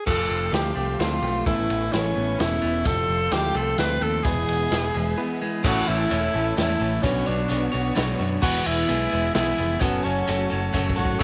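Folk rock and heartland rock in a jangly, hopeful 3/4 at 129 BPM in A major, with a breathy, whispered tenor saxophone carrying the melody up front over a punchy picked electric bass, a twangy, slightly broken-up electric guitar riff, a vintage drum kit with dark cymbals, and a very quiet shimmering twelve-string acoustic, a reedy, worn electric piano with fast tremolo and soft sul tasto strings, while a jingly tambourine joins at 2.9 s, a brief break falls at 5.2 s and a drum fill closes the cut from a longer piece, all under moderate spring reverb.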